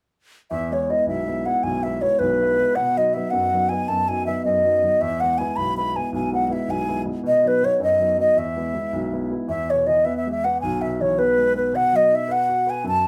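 Set in a moderate studio room where the players perform together, this short, rollicking and bright Celtic folk jig in 6/8 at 107 BPM and in E major puts an airy, woody baroque flute up front with vibrato and a crisp attack for the melody, while a dark, mellow baby grand piano with long sustain and a vintage character supplies the accompaniment, both playing from 0.5 to 13.1 seconds as the opening section repeats.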